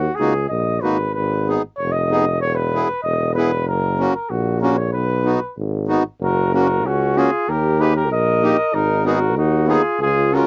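A warm trumpet carries the melody from the first moment over a tuba bass, with the reedy accordion joining at 0.2 s in this bouncy, festive alpine dance band excerpt at 95 BPM in a straight 2/4. The trumpet sings with light vibrato in a classical style, sounding distant and roomy yet up front, while the tuba adds its own vibrato and a warm, roomy depth beneath. The accordion stands out as clear and full, its single reed and dry tuning heard close and dry, holding the accompaniment in the middle register. The music starts in B major, moving through chords such as D#m, G#m, E and F#, then shifts to F# major at 6.2 s, where a mellow second trumpet enters with light vibrato, set lower in the mix beneath the lead. The whole has the dry, close character of a 1970s-style studio recording with little reverb.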